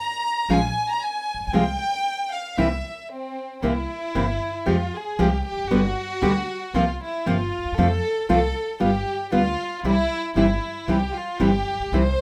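A chamber violin section opens this dramatic, passionate tango at 0.0 seconds and holds a featured line throughout, bowed sul tasto with light vibrato and a soft attack that feels intimate and close. A fingerpicked nylon-string guitar and a pizzicato upright bass join at 0.5 seconds, the classical guitar sitting up front with a warm tone and audible finger squeaks, while the steel-strung bass adds a woody, dark, growly foundation underneath. The tempo is 116 BPM in 4/4, played with a rubato feel and tuned to A4 = 442 Hz. The harmony moves from Bbm7 through C7, Fmadd9 and C7sus4 before settling through G7 to C. A light reverb gives the small ensemble a sense of space in this section cut from a longer piece.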